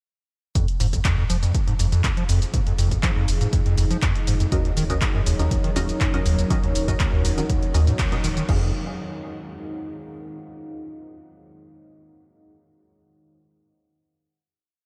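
A hypnotic, gritty acid house piece in straight 4/4 opens at 0.6 seconds with a squelchy, resonant acid bass line whose seven-step loop drifts against the bar, set over a dry four-on-the-floor kick and programmed hats, shaker, claps and crash from a punchy analog drum machine. A round, sawtooth-and-sine bass plays off the beat beneath it, pumping against the kick, while a deep, moody ambient pad with a moving notch fades in on slowly shifting chords. Around 4.5 seconds the harmony moves from Fm7 to Ebm7 as muted, filtered dub stabs arrive in dotted-rhythm chords, one shape moved in parallel and coated in phaser and lush chorus, joined by a detuned analog pad with a slow attack. The band lands an accent at 8.0 seconds before settling on a final Fm7 chord, with the ambient pad ringing on alone to 10.4 seconds. The mix is dreamy and soaked in a cathedral-sized reverb, giving the saturated acid line and dark pads a cavernous haze.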